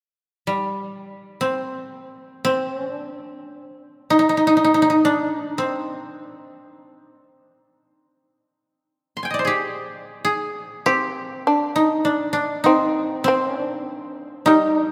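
Austere and meditative, this Japanese chamber piece unfolds in free time and is cut from a longer work, set in the C hirajoshi scale. The koto carries the melody from 0.5 s, played with fingerpicks and sitting up front with a dry, woody tone across a range from G3 to C6. For the opening stretch it plays alone, its lines hanging in a deep church reverb. At 10.9 s the shamisen enters with a second line, plectrum-plucked and fretless, its buzzing, percussive attack kept in a narrow low register. The shamisen sits lower in the mix than the koto, adding a warm undertone until both parts stop at 14.9 s.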